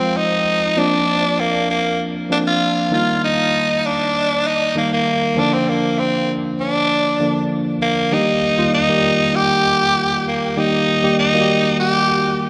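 A breathy, raspy tenor saxophone sings an up-front pop melody with vibrato over a worn, slightly out-of-tune tine electric piano, opening together on an Fm chord in Eb major at a straight 98 BPM in 4/4. The saxophone's gritty, punchy tone carries a tape echo, while the mellow piano sits clean, direct and up front alongside it as the harmony moves through Bbadd9, Eb and Bb before a new section settles on Eb at 8.1 s. Soaked in a long plate reverb, this short excerpt from a longer piece feels dreamy, nostalgic and uplifting.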